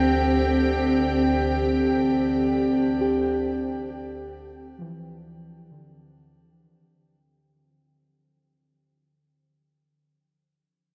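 Ambient in free time, tuned to A4 = 443 Hz, this serene, spacious fragment from a longer piece rests on a single Fsus2/D chord, with an evolving, bright, detuned wavetable pad up front holding sustained chords through chorus and its own built-in reverb until 7.1 s. Beneath it, muted felt-like synth keys play soft, dark arpeggios with chorus and tape echo in the background, while a reedy, breathing hand-pumped harmonium sustains a drone that fades out. A huge, wet ambient reverb with an 8.4-second tail wraps the sound as the whole passage fades, leaving the keys alone until 10.1 s.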